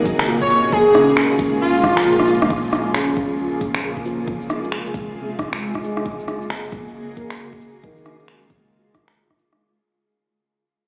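Future garage with a nocturnal, wistful mood, this cut from a longer piece sets a woody, slightly detuned upright piano pumping and dub-echoed over a cloudy, evolving granular pad, a round sine sub bass sitting in the background, a deep tape-toned kick, and an up-front swung kit of finger snaps, smooth hi-hats, rim clicks and shaker. An airy, dreamy lead with chorus, vibrato, portamento and cassette-tape character sings briefly from 0.4 to 2.2 s, and the kick drops out just before 2.5 s. From there a filter sweep moves across the piano as the whole track fades, all of it bathed in a huge ambient reverb, vinyl crackle and a small-speaker tone.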